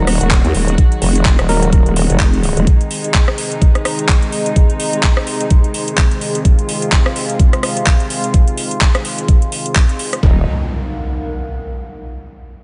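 A nasal, saturated vowel-sweep wobble bass sits up front through the first 2.7 seconds of this aggressive, swaggering bass house excerpt, driven by a knocking electronic kick and a garage kit of handclaps, metallic hats and rim clicks with a swung sixteenth feel, while a distant, reedy string section holds pumping, filter-swept chords, a hollow organ stab sounds briefly in the background through delay, a very quiet warbling lo-fi pad lingers beneath, and an electronic impact lands at 10.2 seconds.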